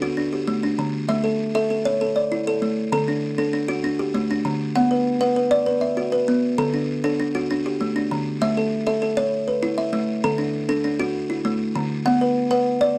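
A steady 12/8 pulse at 131 BPM drives this hypnotic southern African traditional excerpt, where a solo buzzing kalimba, plucked with the thumbnail across a range of D3 to F#5, sits up front with a woody, brilliant, mid-forward tone in a dark production with light reverb, circling D, A and B minor, with a new section beginning at 8.4 seconds.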